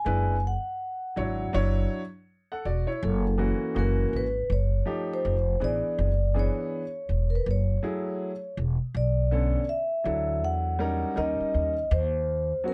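A lightly reverberant mix with softened highs gives this jazz-hop excerpt a nocturnal, smoky air, its hip hop groove swung on the sixteenths. A mellow, ringing vibraphone, close-miked and played with soft mallets with its motor off, carries the melody, while a boxy, intimate upright piano with audible action noise accompanies it up front. A woody pizzicato upright bass also sits up front. The harmony moves through rich, chromatic jazz chords for the first 8.9 seconds, then turns to a new passage that reaches a rootless G#7/D# at 11.9 seconds.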